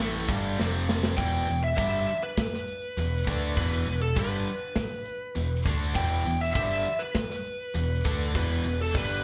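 A biting, overdriven lead guitar takes the melody from 1.2 seconds, riding up front over a driving, menacing hard rock groove in E phrygian at 100 BPM in a straight 4/4. Beneath it, a cranked stack guitar with spring reverb and a bright, high-gain distorted guitar play the riff, joined by a growly, punchy overdriven picked bass and a tight metal drum kit that enters at 0.3 seconds and plays a fill just before the lead arrives. The band sounds like it is playing live in one room, wrapped in a wet studio reverb, as the harmony moves from G5 and F5 to Em in this excerpt cut from a longer piece.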